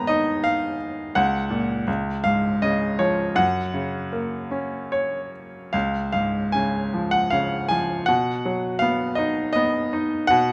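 A bright, polished baby grand piano plays alone from the first moment in this lyrical classical excerpt, unfolding a warm, peaceful line in a rubato 3/4 across a span from C#2 to A#5, its short-sustained, up-front tone caught by close, detailed microphones in light reverb as the harmony moves from G#m through F#/C# and C# to F#, then on to C# at 5.7 seconds and B at 8.1 seconds.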